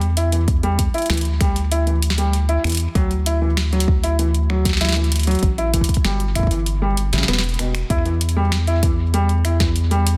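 Melancholic and intricate, this short IDM passage in E minor moves at 97 BPM in a straight 4/4 feel, cut from a longer piece. A rubbery, hollow square-wave bass sits up front from the start, its dark, resonant filter pluck bouncing between E1 and E2 through a progression of Em7, D, A7(no3) and back to Em. An analog electro drum machine supplies dry, punchy snare with soft clipping, finger snaps and metallic hats, set in studio reverb with dub echo. From 0.2 seconds a felt-muted upright piano plays soft, intimate arpeggios between B2 and E4, its thin felt tone carried by digital delay, and at 0.5 seconds a deep electronic kick with studio reverb joins. Light digital ambience surrounds the parts, and the master is dense and heavily limited.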